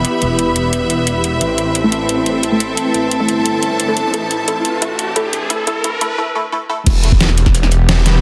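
A swirling, thick detuned saw bass with phaser and overdrive drives this dark, tense drum and bass excerpt at 176 BPM, pumping against the sidechain as the harmony moves between E minor and A minor. Alongside it, a deep, moody ambient pad holds sustained chords with chorus and reverb. A clear symphonic string section sits up front with light vibrato and a smooth, even bowed sound. An up-front dubstep kit with a deep snare and metallic hats carries the build-up. Muted dub chord stabs, mellow and phased with tape echo, enter at 1.8 seconds, and an electronic riser joins at 2.8 seconds. At the drop at 6.9 seconds, a knocking electronic kick arrives with a very quiet, gritty breakbeat kit with a high-tuned snare, all within a dense, heavily limited mix with light reverb.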